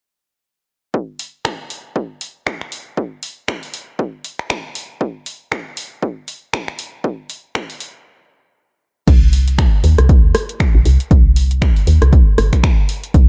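A punchy, tape-warm electronic kick enters at 0.9 s and is quickly joined by an analog drum machine's hi-hat, rim click, finger snaps and crash cymbal, both carrying gritty 12-bit sampler texture and the kick high-passed, in a moody, late-night deep house groove at 118 BPM in C minor with a 58% sixteenth-note swing, dry and dark in production; after a break at 8.1 s, a round, woody FM bass with a fast attack and a decaying tone arrives up front at 9.1 s, pumping against the sidechain.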